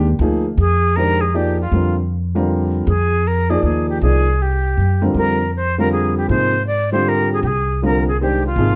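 This modal jazz excerpt, cut from a longer piece, moves in a swung three-beat metre with an intense, spiritual mood. A clear baby grand piano plays accompaniment from the start, its open tone ringing with long sustain, while a pizzicato upright bass on gut strings supplies a woody, thumpy low end, sitting slightly louder than the other parts. At 0.6 seconds a bright concert flute takes the melody, its breathy, tongued straight tone carrying a slightly unsteady quality. The harmony rests on an F minor sixth chord that shifts to an F minor six-nine as the flute arrives. All three instruments sound up front, framed by light reverb.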